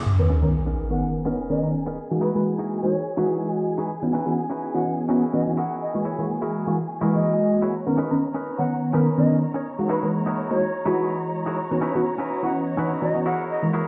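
A soft, low-passed string section opens with sustained, vibrato-laden chords as an up-front electronic sub drop lands at 0.1 s, setting off a feel-good, funky house groove at 125 BPM in B major with a light 16th-note swing. A punchy, detuned sawtooth polysynth carries the accompaniment with filter plucks, chorus, phaser and cassette tape colour, while a bright, twangy, direct-recorded clean electric guitar picks a compressed riff and a breathy jazz flute sings the melody through 12-bit sampler grit and tape echo. Rich chords such as Bmaj9, Emaj9#11, C#m11 and F#9 cycle beneath a filter sweep, all set in a stone-room echo chamber that sounds like a big system played in a bare space.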